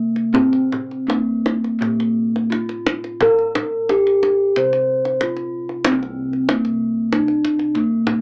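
A mellow bronze metallophone, struck with padded disc mallets, rings softly up front in this serene, ceremonial short excerpt of Javanese gamelan, carrying the melody in C slendro at 80-94 BPM in a straight 4/4. Round, beating bossed gongs hold the bass just behind it, while a deep, saturated kendang played with hard hands joins at 0.2 seconds. The music moves into a new section at 5.9 seconds, heard through a moderate booth ambience with an AM radio sound.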